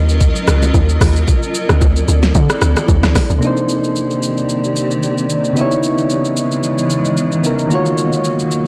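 Amapiano cut from a longer piece with a deep, late-night mood, where a blurred granular cloud pad pumps beneath a fat-snared R&B kit, a round, dark log drum bass and background congas and bongos drop together until 3.4 seconds, when mellow chorused electric-piano-like synth keys enter amid a blown-out, overdriven sound and light digital ambience.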